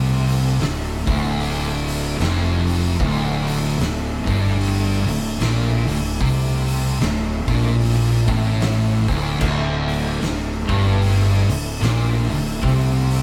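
A band playing live in one room, caught with light reverb, opens this heavy, brooding stoner and doom metal excerpt at a slow 75 BPM in 4/4 with a swung feel, resting on D minor throughout. Two thick fuzz guitars, one warm and one dark, grind out a low riff in the background while a round, punchy fuzz bass sits up front, and a bright, shouting tonewheel organ holds sustained chords through a slow rotary speaker with overdrive, chorus vibrato and key click. An oversized low-tuned drum kit with a fat snare, punchy kick and dark cymbals enters at 0.3 seconds in a gritty, pumping stone room, and a double-tracked overdriven guitar joins the riff at 9.4 seconds.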